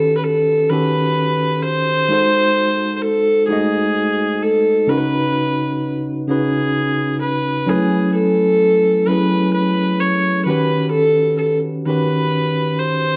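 A reedy, gut-string viola played with light vibrato and a period-style bow carries a yearning late-night melody over a clean tine electric piano heard through its built-in speakers, both up front from the first second in this 6/8 R&B passage cut from a longer piece, played live together in one room whose moderate stone reverb gives the altered and suspended chords a softly resonant setting.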